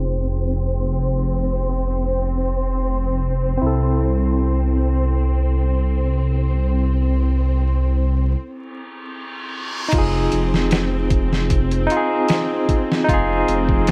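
Cinematic and hypnotic, this 76 BPM trip hop excerpt sets a barky tine electric piano with tremolo and a lush bowed string section, both under filter sweeps, over a deep, rumbling detuned saw bass and a very quiet flickering granular texture, moving from Fm7 to C6 before a break at 8.4 seconds and an electronic reverse cymbal lead to a gritty, pitched-down boom bap drum kit with a thumpy kick at 9.9 seconds, all over a bed of vinyl crackle.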